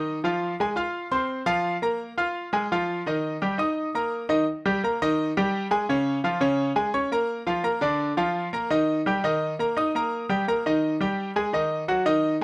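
Latin solo piano at a brisk 170 BPM in a straight four, sunny and danceable, with a bright, brilliant grand piano played up front with short sustain across a range from Db3 to F6, moving through Fm, Bb5 and Eb before a second passage from 4.5 seconds over Db, Bb and Eb, captured with close, detailed microphones and light reverb in this short excerpt cut from a longer piece.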